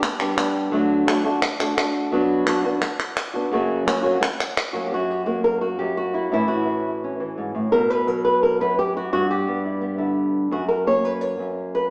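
The flamenco guitar stands out most, carrying the melody up front from F#2 to C#5 with a fingerpicked, warm tone and audible finger squeak. This dramatic, intense flamenco piece moves at 171 BPM in a straight 4/4, set in F# phrygian dominant and tuned to A4 = 438 Hz. Crisp, dry palmas hand claps sit close and up front alongside the guitar from the start, then stop at 4.8 seconds, leaving the guitar alone until the end at 11.9 seconds. The harmony passes through G, D, Bm and F#, then a second section begins at 4.9 seconds, moving through A, B5, G6 and back to F#. The band plays live in one room with a wet stone reverb, and the sound has a small-speaker character, cut from a longer piece.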